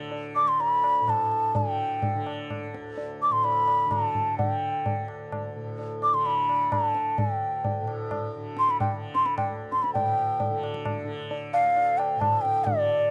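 In a straight 3/4 at 129 BPM that keeps speeding up, this meditative, longing Hindustani classical fragment in raga Bhimpalasi on D sets a low-tuned, ringing tabla and a softly plucked, buzzing, shimmering tanpura drone beneath a hollow, pure bamboo bansuri that sits up front from 0.4 seconds with vibrato, a crisp attack and a slapback echo, captured outdoors with little reverb.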